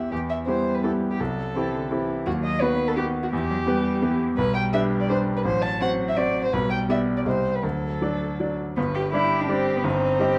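A dark production with moderate large-studio reverb frames this short cut from a cheerful, lively classical-period movement for piano trio, moving quickly in 3/4 at 168 BPM with a rubato feel, beginning in E minor and turning to G major at 4.4 s. Up front, a brilliant concert grand with deep bass and short sustain accompanies a woody violin melody played with vibrato, while a rich, pure cello bowed sul tasto adds a soft-edged, floating second line from a distance. A brief new section arrives at 8.8 s, landing on a G chord.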